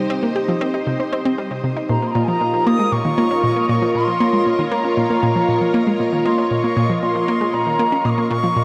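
A straight 4/4 pulse at 117 BPM drives this ambient, sequencer-driven space music in Bb dorian, expansive and mysterious in mood. Up front, an analog pluck plays a riff between Bb2 and G4. Its detuned sawtooth and pulse tones have a fast attack, short decay and a noise layer, with chorus and analog delay on each note. Alongside it, a string machine in full ensemble holds lush, vintage sustained chords between Eb4 and Db5, thickened by a sub octave and ensemble chorus, shifting from Cm to Bbm at 1.9 s. At that moment a bright wooden flute enters with the melody between Ab5 and Eb6, airy and tongued with expressive vibrato, set distant under analog delay. In the background, a bubbling texture on Eb5 moves through random resonant filter steps, bathed in its own reverb, while a wet shimmer reverb with a 6.3 s tail gives the dark, warm production its deep sense of space.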